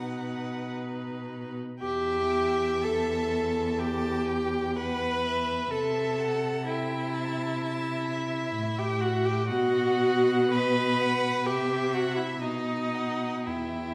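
A classical slow romantic movement for string quartet in E minor, this elegiac, melancholic passage moves at around 62 BPM in 4/4, with uneven, rubato beats that let the phrasing breathe. All four bowed parts play with vibrato throughout the 13.9 seconds, cut from a longer piece. The viola and cello sit close and up front: the viola carries the accompaniment in a smooth, even voice, while the cello anchors the bass with a rich, focused tone. Further back, the first violin sings the melody in a clear, distant line, and the second violin adds a second line that is smooth and even. The harmony settles from B onto E minor at 1.8 seconds, moves to A minor over C, and closes by turning between B and C. A recital hall reverb, as in a church or concert hall, surrounds the quartet with a wet, lingering ambience.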